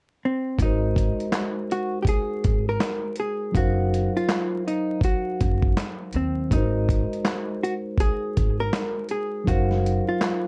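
Melancholic and hazy, this lo-fi hip hop excerpt sways on a swung sixteenth-note feel under a bed of vinyl crackle and light reverb. A dark, clean hollow-body jazz guitar carries the melody up front from 0.3 seconds, its fingered lines compressed and intimate. From 0.6 seconds, a mellow tine electric piano fills in the harmony through its built-in speakers, while a woody, pizzicato upright bass anchors the low end. A gritty, sampler-style drum kit with vintage 12-bit crunch sits up front, pairing a thumpy kick and medium-tuned snare with hi-hat and handclaps, all re-recorded in a large room. The harmony rocks between Ab7 and Ebm69/Gb, and the bass drops out at 10.0 seconds just before the rest of the group.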